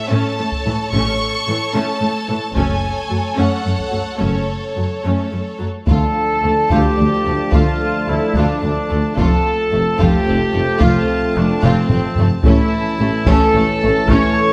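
Cinematic epic orchestral film score in a dark, dramatic 6/8, cut from a longer piece, where bowed violins carry a smooth, vibrato-rich melody over a second violin line, lush violas, expressive cellos with portamento and intense double basses, the upper strings on a warm symphonic footing, while heavy-stick taiko drums sound from a small room; at 5.9 s a clear trumpet section enters up front with stabs, joined by roomy French horns and bright trombones in sustained chords and a very quiet, mellow tuba, before a taiko fill at 11.6 s, all set in a wet scoring-stage reverb.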